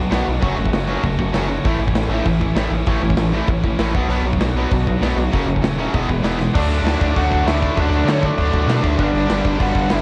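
This excerpt of upbeat, rebellious punk rock opens on three bright, overdriven electric guitars, two distorted and one raw garage guitar, all picked riffs sitting in the background with a cassette-tape grit, while a gritty, aggressive synth bass drives up front with a nasal, wave-folded and saturated edge. A big rock drum kit joins at 0.1 seconds, its punchy kick, medium-tuned snare, hi-hat and bright crash cymbals ringing in a big room, at a straight 196 BPM in 4/4. The harmony moves through F#m, A, Bm and E before a drum fill at 6.4 seconds leads into a new section built on D and G. At 6.5 seconds a dark, nasal lead guitar with a parked wah enters with a melody, overdriven and tape-worn like the rhythm guitars. The whole thing has the raw, dry feel of a home recording on cassette, with little reverb.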